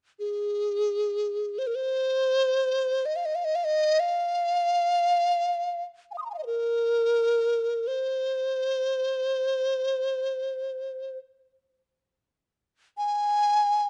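Close, detailed microphones and a light reverb place a single large dizi up front, so every breath and edge of its tone comes through clearly. This is Chinese traditional music in free time, set in the C jue mode, with a graceful, wistful mood. The dizi plays solo from 0.2 s to 13.9 s, moving between Ab4 and Eb6. Its bamboo body gives a mellow, hollow, airy voice, and its membrane adds a buzzing edge. The playing is tongued and carries a vibrato that heightens the wistful feeling. The passage is cut from a longer piece and stays within a single section.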